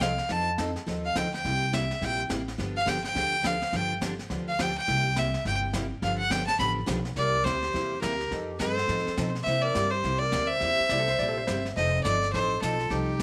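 A clear, biting fiddle takes a cheerful, down-home western swing solo over bright picked acoustic guitar, woody pizzicato upright bass and an airy brushed drum kit at a brisk, swung 210 BPM in C major, before a breathy, whispered clarinet joins in the background at 7.2 seconds and a dark, clean lap steel slides in briefly at 10.9 seconds, all in light reverb.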